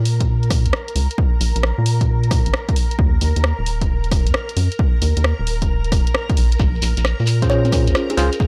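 A silky, vintage string machine holds soft sustained chords with ensemble chorus and sidechain pumping, over a rubbery, bouncy square bass and a punchy electronic kick up front, opening this soulful, late-night two-step UK garage passage at 133 BPM with a swung 16th feel. A punchy analog drum machine fills in congas, hi-hat and rim click in a dry hardware sound, while a grainy, mellow shekere slips into the background at 6.6 seconds. Near the close, a barky, overdriven tine electric piano plays stabs with medium tremolo from 7.4 seconds, and just after, a woody, thumb-plucked kalimba carries a short melody through analog delay.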